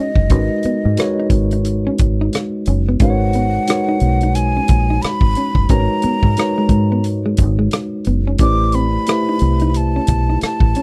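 Swung sixteenths at 89 BPM in 4/4 give this late-night, sultry neo-soul and R&B excerpt a loose, unhurried sway, carried by a soul drum kit with a tight kick, hi-hat and rim click under a rolled-off top, and a deep, round, foam-muted fingered bass that sits up front. A worn, slightly out-of-tune tine electric piano, lightly overdriven through its built-in speakers, sets out a G#m11 harmony that shifts to Am11 at 8.4 seconds, while a clean hollow-body jazz guitar plays a dark second line beneath. On top, a breathy metal flute with a soft attack, vibrato and lifted highs carries the melody, all in a dry sound with little reverb.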